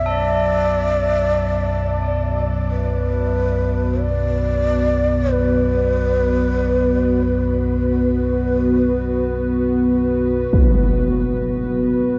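A breathy shakuhachi with a bamboo tone and mellow vibrato opens this unsettling dark ambient drone at 46 BPM in B minor. Its melody floats in shimmer reverb and delay over an ominous, rumbling sawtooth drone and solemn tubular bell arpeggios set in the background. From 0.8 seconds a detuned, ring-modulated analog pad adds sustained chords with chorus, while the mix sits in a vast, echoing space; at 10.5 seconds the harmony moves to a B5 chord as a huge, bright impact strikes through a low-pass filter, leaving the drone and pad to carry the close.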